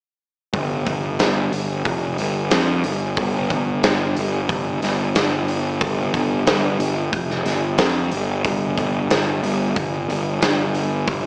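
Classic rock excerpt at 91 BPM in a confident, sunny mood, where an up-front, overdriven fuzz picked electric bass ranging from F1 to F2 plays alongside an acoustic big rock drum kit of hi-hat, punchy kick and medium-tuned snare in a pumping studio room, both from 0.5 seconds to about 11 seconds, with light reverb and a small speaker sound.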